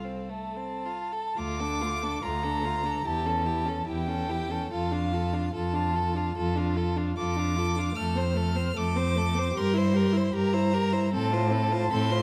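Heard through close, detailed microphones in a recital hall with a moderate reverb, this short passage from a longer classical piece is a slow, romantic movement for string quartet in a serene, tender mood. The pulse breathes freely in rubato, the beats uneven. The first violin carries the melody high above the others, its bowed tone rich and smooth with a light vibrato, yet set slightly distant. Beneath it, the second violin plays a clear, focused second line up close, while the viola's even, vibrato-warmed accompaniment fills the middle. The bowed cello sits up front as the bass, focused with a smooth top. The harmony moves from F through D minor and shades of A7 and C7 before resting on F over A.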